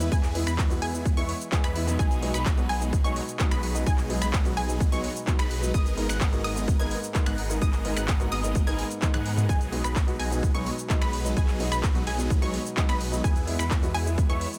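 A digital ambience wraps this short cut from a longer festival progressive house track, where an overdriven, punchy electronic kick sits up front with a large-room character. At 128 BPM in 4/4 with a straight feel in B major, the mood is uplifting and triumphant. A huge, euphoric supersaw lead carries the riff with a bright, phased edge and delay, while a detuned saw bass gives thick, lush low end with chorus. A unison pluck spins high arpeggios with a short, snappy decay, and a warm grand piano fills in the accompaniment, both pumping against the kick alongside the lead and bass. The overdriven house kit adds finger snaps, handclaps, hi-hat, shaker and toms, with a drum fill at 9.0 seconds, over chords that move from E through B6 and G#madd9 before returning to E.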